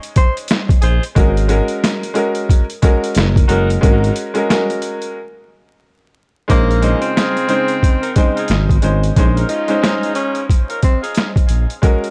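Gritty, dry hardware sound with vinyl crackle frames this dark, tough boom-bap excerpt at 90 BPM in Bb minor, where an overdriven, thumpy sampler-style drum kit with a high-tuned snare and a smooth sawtooth synth bass sit up front beside a woody, slightly detuned upright piano on cassette tape, while a bright vintage saxophone section plays stabs with analog delay and a jazz-style tenor saxophone with light vibrato carries the melody from 6.5 seconds, following a break at 5.2 seconds.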